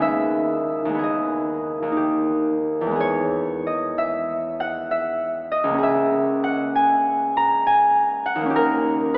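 Classical solo harp piece, gentle and mysterious, in G# minor and 3/4 at a rubato 59-69 BPM, where a concert harp, fingerpicked, ringing and up front, spans C#2 to A#5 over chords moving from G#m/D# through E and A#m7b5/C# to D#7 at 8.6 seconds, all bathed in a cathedral reverb with a 5.4-second decay and heard from further back in the room through an AM radio sound in this brief fragment cut from a longer work.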